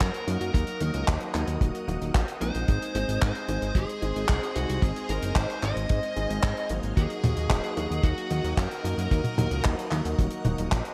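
The recording sits in a small room with light reverb, with a dry, tight kick and a fat, saturated analog bass up front. This nostalgic, danceable italo disco excerpt moves in a straight four, and the bass adds a detuned sawtooth edge with a filter pluck and a fast attack that holds into long notes. A damped 70s drum kit with a dark, rolled-off top adds handclaps, hi-hat and toms, wrapped in gated reverb. A concert grand piano plays intimate stabs with audible action noise and shimmer reverb, while a lush, bright string machine with a sub octave and ensemble chorus holds soft-attack chords in the background. Over them, a picked, compressed fuzz lead guitar carries the melody through delay and shimmer reverb before stopping at 9.6 seconds.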